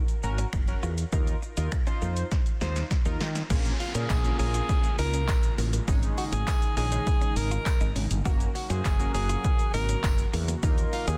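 A clean, chorus-soaked electric guitar riff opens this driving, confident dance-pop excerpt in Bb minor at 101 BPM, joined at once by a punchy analog drum machine with a clipped snare, a glossy pulsing polysynth and a growly fretless bass, before an airy pad, distant jingly tambourine and a background downlifter arrive at 3.5 seconds and a bright, vibrato-laden alto saxophone takes the melody at 3.8 seconds over a dense, heavily limited mix.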